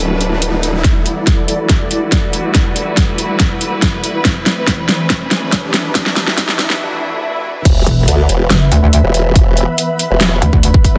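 Lush, bowed symphonic strings with vibrato and a blurred, detuned granular pad open this heavy, chaotic half-time wobble dubstep excerpt, both pumping under sidechain, while a saturated formant-sweep wobble bass and a background riser sound briefly as an up-front electronic kit with a huge snare and metallic hats enters; a punchy, tape-warm kick then joins to drive a build-up with a drum fill and a filter sweep on the strings. After a short break and swell, the drop at 7.7 seconds brings back the formant bass alongside an aggressive, distorted FM wobble bass with chorus and overdrive, the loudest part, over a sub-drop impact. The dense, heavily limited master carries light reverb.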